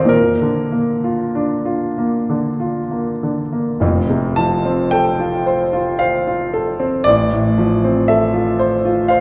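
Heard from further back in a recital hall with a wet 1.5-second reverb, this brief fragment of a nostalgic, dreamy romantic nocturne features a solo concert grand piano, smooth and vintage in tone with a deep bass, sitting up front and ranging from F1 to A5 in a slow, rubato 3/4 at 48-59 BPM, as it drifts from Bb major into F major at 3.8 seconds and settles onto an F/A chord at 7.1 seconds.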